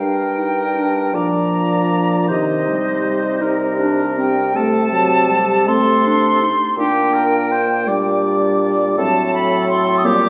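Moving in an uneven, rubato 6/8 at 54 BPM, this solemn, yearning slow romantic movement for wind quintet in G minor, cut from a longer piece, sets an airy, up-front silver concert flute melody with soft attack and vibrato above a punchy, distant oboe second line, while a mellow French horn and a present clarinet fill the accompaniment and a vintage-toned bassoon holds the bass, all heard from further back in a wet recital hall as the harmony passes from Gm through Cm, D7/C and Gm/Bb to F#dim/A over 10.3 seconds.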